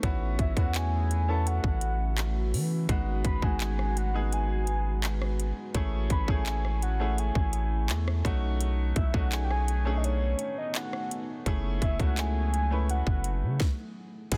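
A long, sine-deep 808-style bass sits up front with a trap drum kit of hard-clipped kick, sharp snare, metallic hats, handclaps and rim clicks in this longing, sensual contemporary R&B excerpt at 84 BPM in F# dorian, where a clear, worn grand piano and a moody background pad with chorus and built-in reverb carry chords from A6 to F#m9 while a round, octave-layered synth lead with chorus and delay sings from 0.4 to 13.6 seconds in a dense, heavily limited modern master.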